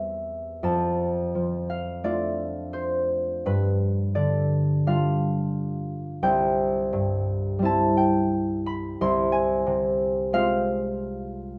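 Classical solo harp music, this brief excerpt of 11.6 seconds moves at a relaxed 86 BPM in 4/4 with a rubato feel, leaving the pulse free and unhurried. The mood is dreamy and graceful, settled in C major with the tuning pitched at A4 = 441 Hz. A lone concert harp carries everything, spanning C2 to C6 with an acoustic, thumb-plucked sound whose ringing tones sit up front in the mix. The harmony drifts from C/E through Dm/F to G7, resolves to C at 6.2 seconds, then turns to a shadowed Fm/C at 9.0 seconds. A moderate large-studio reverb wraps the harp in a soft, airy space.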